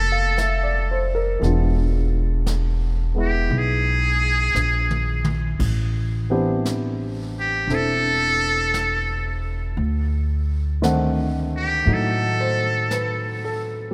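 Tender and romantic, this slow jazz ballad moves at 57 BPM in a swung 4/4, with a buzzy, thin trumpet in a metal mute carrying the melody with light vibrato over chords such as Bbmaj9, E7b9, Am11 and D7b9. A polished concert grand piano with deep bass and short sustain accompanies, while a woody, growly pizzicato upright bass sits up front. A brushed drum kit with dark cymbals and a boomy kick enters at 0.4 seconds and adds a fill from 4.6 to 5.6 seconds, all within a vast, echoing cathedral-like space in this short cut from a longer piece.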